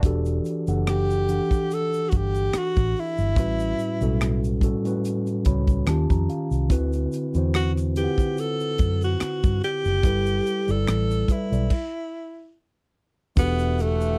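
R&B and neo-soul at a late-night, smooth 72 BPM in E minor, with a lightly swung groove from a tight, dry funk drum kit, a round, punchy muted electric bass, a mellow tine electric piano that slips in a fill, and a soft egg shaker with finger snaps in the background, while a clear, close-miked tenor saxophone carries the jazz-style melody with vibrato, scooped notes and slapback echo from 0.9 seconds; the band breaks for a stop at 11.7 seconds before a reedy, breathing harmonium enters at 13.4 seconds in this dry, close 1970s-style studio recording cut from a longer piece.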